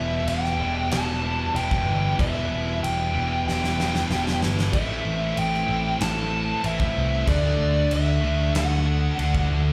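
A straight 4/4 groove at 94 BPM drives this aggressive hard rock excerpt in E minor: a gated 80s drum kit with a fat snare and tight kick enters at 0.3 s and throws in a fill at 3.5 s; a growly, punchy picked electric bass sits up front; two high-gain distorted guitars and a double-tracked raw garage guitar with overdrive and slapback echo play riffs in the background; and a dark, smooth overdriven lead guitar with slapback echo sings the melody over Em, Am and D, all heard as a live gig through the venue's PA with club reverb.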